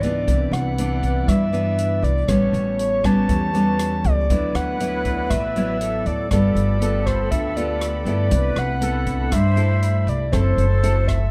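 Bossa nova at 119 BPM in 4/4 with a straight feel, this intimate, melancholic passage is cut from a longer piece and carries a dark, dry production. A breathy, warbling synth lead with a flute-like, vintage tone and chorus carries the melody from C5 to A5, its soft attack and vibrato giving it a sustained, hazy quality. Up front, a bright, fingerpicked nylon-string guitar supplies the accompaniment, while a woody pizzicato upright bass anchors the low end and a muted string section, played con sordino, sits veiled and distant in the background with bowed chords. A swinging big-band drum kit keeps time with hi-hat, rim click and a punchy kick, and at 4.3 seconds an airy flute section joins with a soft second line. The harmony moves through rich extended chords, from Cmaj9 and A9 through D69, G9 and Cmaj13 before settling on F#m7b5.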